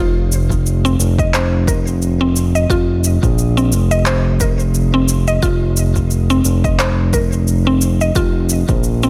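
A light reverb gives this short excerpt from a longer organic downtempo piece a soft, airy space, and its mood is mystical and meditative. At 88 BPM in 4/4 with a gentle 16th-note swing, it rests on an F5 chord, tuned to A4 = 442 Hz. A smooth synth bass sits up front from the start, its nasal, detuned tone built from sawtooth, square and triangle waves, sustained with vibrato and pumping from sidechain compression. Above it, a woody, round, mallet-like FM pluck plays arpeggios between C4 and Eb5, its bright, percussive attack dressed in chorus, delay and shimmer reverb. An overdriven electronic shaker and handclaps join at 0.3 seconds, and a punchy, layered electronic kick drum enters at 0.5 seconds, both carrying a small room reverb.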